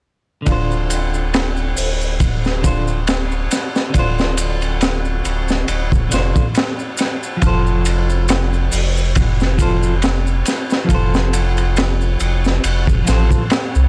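Trip hop with a brooding, melancholic mood, this short excerpt cut from a longer piece moves at a slow, lightly swung pace in 4/4. A crunchy breakbeat drum kit sits up front with hi-hat, kick, snare and ride, its punchy kick, high-tuned snare and dark, rolled-off cymbals carrying a saturated, gritty edge. Beneath it, a round sine sub bass with a fast attack holds sustained, mellow low notes, also placed up front. A clean, picked electric guitar plays accompaniment from 0.4 seconds, coloured by tremolo, tape echo and vintage 12-bit sampler grit, while compressed maracas and a group handclap stay in the background. The harmony rests on Dm7 before moving to F at 7.4 seconds, all within a dry, rough hardware sound set in studio reverb.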